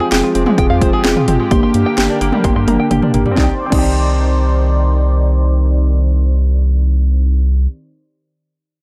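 Synth-pop at 129 BPM in C minor, cool and driving, this dry, gritty excerpt pairs a deep, nasal analog bass up front with punchy, overdriven house drums that play until 3.9 seconds, including a fill from 2.4 seconds, while muted, warbling felt-like synth keys, a plunky fingerpicked open-back banjo with tape echo, and a lush, detuned unison pad carry Fmadd9 and Gm chords before the move to Cmadd9 at 3.4 seconds.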